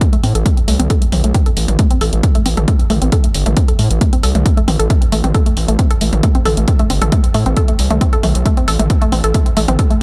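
A straight 4/4 pulse at 135 BPM drives this intense, industrial stretch of peak-time techno in A minor, cut from a longer piece and resting on a single Am chord. A heavy, layered electronic kick sits up front from 0.0 seconds, alongside a techno drum kit of hi-hats and toms that also plays from the start, whose hats, cymbals and toms pump with sidechaining, and both drum parts carry the sound of a large room. Beneath them, a gritty synth bass built from square, sawtooth and sine waves with oscillator sync growls between G1 and A2. The bass is saturated, resonant and evolving as a filter sweeps through it, and it also pumps and sits up front. A woody, wave-folded pluck carries the riff between A3 and A4, its short, percussive notes given a warbling vintage colour by chorus, tube saturation and digital delay while pumping with the sidechain. The production is dark, with digital ambience around the parts and tuning set to A4 = 436 Hz.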